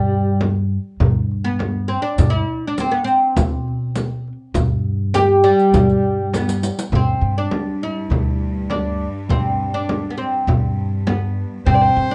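The recording has the worn, warbling character of an old cassette, with a wavering pitch, a dulled top end and a moderate studio reverb around the players. This festive, passionate passage from a Turkish makam ensemble piece in four is cut from a longer performance. A mellow, fretless oud, plucked with a plectrum on double strings, carries the melody up front with a woody, deep tone, while a thumpy pizzicato upright bass on gut strings holds the low end. A crisp, metal-shelled darbuka sits in the background beside a large frame drum, both struck with hard hands, and a riq with dark jingles joins them for a stretch of the opening section before a drum fill leads into the second section at 6.9 seconds. There a rich chamber cello section enters with a soft, sul tasto drone, and a single expressive, smooth-topped violin, bowed with vibrato and portamento, appears only at 11.7 seconds, just as the excerpt ends.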